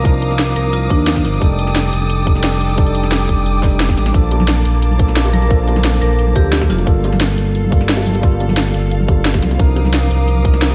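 A tight, layered electronic kick and a drum-and-bass kit with a cracking snare and hi-hat drive this dreamy, uplifting liquid drum and bass fragment at 176 BPM in a straight 4/4, with bright bongos and congas joining in the background from 4.3 seconds. Up front, a smooth, gliding synth bass blending sawtooth and square tones, with a fast attack and portamento, holds the low end under tube saturation. A worn, slightly out-of-tune tine electric piano, lightly overdriven and heard as if through built-in speakers, carries the accompaniment with tape echo. A dark chamber string section sustains bowed chords with vibrato and a smooth top, pumping under sidechain compression. In the background, a metallic, ringing vibraphone with medium hard mallets and motor vibrato plays brief melodic phrases through tape echo, returning at 5.3 seconds. The harmony moves from Cm11 through F13, Bbmaj7 and Gm9 back to Cm11 in Bb major, all set in a moderate, lush hall reverb that leaves the mix dreamy and soaked.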